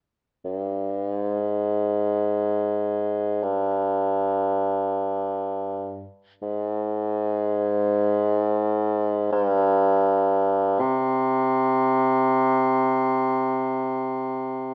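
Moving in free time, this calm, austere fragment of Japanese chamber music, cut from a longer piece, features a solo bassoon with a mellow, vintage tone in classical style, placed up front and heard in close detail with light reverb as it enters at 0.4 seconds and holds the low register from G2 to C3.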